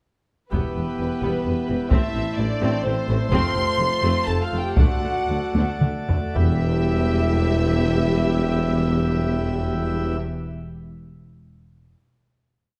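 A moderate scoring-stage reverb surrounds this complete, dark and epic cinematic orchestral cue in triple time, where two bowed violin sections with vibrato carry the tune doubled at the octave, one lush and distant, the other focused and set in the background. A very quiet viola section drives a rhythmic ostinato and cellos play a driving bass ostinato, while a dark double bass section and a tuba double the bass line, and a distant, roomy French horn section and a chamber organ with a full principal chorus and audible chiff hold sustained chords. Compressed, saturated taiko strokes from hard sticks land as single big hits until 6.5 seconds; the theme slows from 2.6 seconds, and a drum fill leads into a held final chord at 6.4 seconds.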